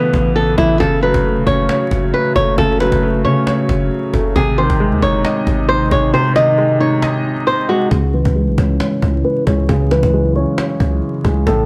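Dry, gritty and dusted with vinyl crackle in a small room, this menacing, eerie half-time trap hip hop excerpt at 135 BPM in C# minor sets a fingerpicked flamenco guitar melody up front over a soft, felt-muted upright piano with audible action noise, a deep, detuned analog pad with chorus in the background, a woody cajon played with hard hands, and a punchy, heavy 808-style bass, with the kick dropping out from 6.1 to 7.9 seconds before the harmony settles on C# minor at 7.9 seconds.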